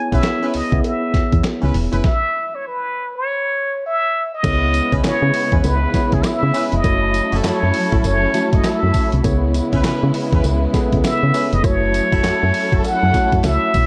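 Slick and punchy, this swung new jack swing groove at 100 BPM in C# minor sets an up-front, wah-wah plunger-muted trumpet melody over clean tine electric piano, tight, distant jazz-style horn stabs, a round, dark FM bass, a gritty, compressed sampler-style drum kit with thumpy kick, handclaps and tambourine, and a very quiet, dry cowbell, halting for a stop from 2.0 to 4.4 seconds before lush, bowed studio strings enter with sustained chords as the harmony moves between C#m7 and F#m7.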